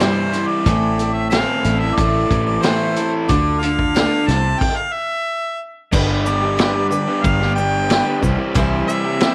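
A smooth-topped harmonica with light vibrato carries the melody up front in this wistful, reflective excerpt of folk rock and heartland rock, moving at a steady 91 BPM in straight 4/4 over chords that circle through C, Am, Dm and G. Beneath it, a bright, fresh-stringed picked acoustic guitar with audible finger squeak sits beside a double-tracked, overdriven garage guitar riff, while a foam-muted fingered bass and a vintage kit with dark cymbals, a high-tuned snare and a punchy kick hold the groove under light studio reverb. The band breaks off in a stop from 4.6 to 5.9 seconds. At 5.9 seconds a grainy tube shaker slips in quietly in the background, and the bass drops out at 8.8 seconds.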